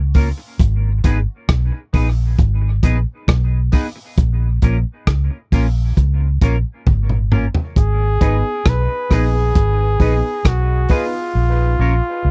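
Dub reggae at a slow 67 BPM in 4/4 with a straight feel, this meditative, spacious passage in G# dorian is cut from a longer piece and sits in a dry, close 1970s-style studio sound. A dark, round, foam-muted electric bass sits up front from the start, while a crunchy breakbeat kit with a tight kick, gritty saturation and a rolled-off top works hi-hat, rim click and toms, adding a fill from 6.9 to 7.8 seconds. A clean, twangy electric guitar plays accompaniment bathed in lush chorus and dub echo, over chords moving between A#m and G#m. At 7.8 seconds a clear flugelhorn enters with the melody, its light vibrato and smooth top carried on dub echo. A worn, woody, slightly detuned upright piano adds stabs in the background with long sustain and echo before parts drop out near the end.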